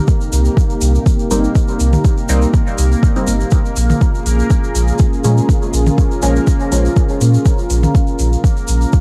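Dub techno with a nocturnal, meditative mood, this short excerpt from a longer piece rides a lightly swung 4/4 groove under a dry, gritty sound flecked with vinyl crackle. An overdriven, deep kick sits up front alongside a round, soft sub bass that pumps against it, while a metallic, overdriven hi-hat ticks away in the background and a grainy, band-limited egg shaker adds its own patter. A dark, detuned analog pad holds sustained chords with chorus and sidechain pumping, shifting from Cm7 to Bbm7 at 3.5 seconds, and a bubbling texture of resonant, randomly stepped filter moves drifts alongside it in its own built-in reverb. From 1.3 seconds a mellow chord stab with a filter sweep, phaser and dub echo decays into the space, and tape-warm electronic toms join at 1.9 seconds, their hits trailing off in dub echo.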